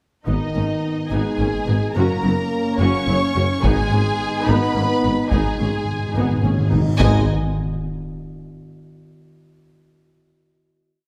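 This is a cinematic, epic orchestral film score in 6/8, dark and dramatic in mood. A lush violin section carries the melody with smooth vibrato, while a second violin line doubles the tune at the octave and in thirds, and the violas drive an expressive rhythmic ostinato with portamento beneath them. Clear trombones double the tune at the octave and mellow French horns hold slow swelling chords in the background. The low end comes from a focused, very quiet cello ostinato, a rich double bass section and a quiet tuba doubling the bass line. Taiko drums strike single big, dry strokes, and the timpani add single strokes on the bass notes before a fill from 5.3 seconds. A huge, dark reverse cymbal rises at 6.8 seconds into a low sub-drop impact at 7.0 seconds as the final chord rings out in a moderate scoring stage reverb.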